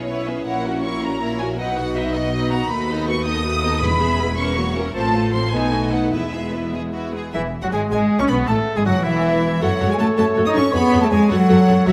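This cheerful, spirited fragment of a quick classical-period orchestral movement in a rubato 6/8 opens on a lush violin melody over a bright second violin line, focused violas, close double basses, smooth cellos and dark, tight French horn chords held in the background, with a brief, very quiet hard-mallet timpani stroke at 3.8 seconds, before a clear oboe, a mellow clarinet and an airy, hollow small flute group join on the second line at 7.3 seconds as the harmony turns to minor, all set in a moderate stage reverb.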